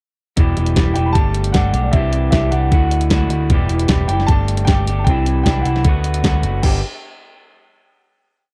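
Indie rock with a wistful yet upbeat mood, this short piece runs a pre-chorus over Em, Gsus2, Cadd9 and Dadd9 chords before landing on a final G5 chord at 6.6 seconds. A thumpy, sampler-style drum machine with a fat snare and pop groove sits up front beside a driving eighth-note picked electric bass, while an electric guitar through a small old amp strums slightly broken-up, lo-fi chords. From 0.9 seconds a mellow, woody upright piano carries a motif-based melody in sentence phrases, set in light reverb within a dark production.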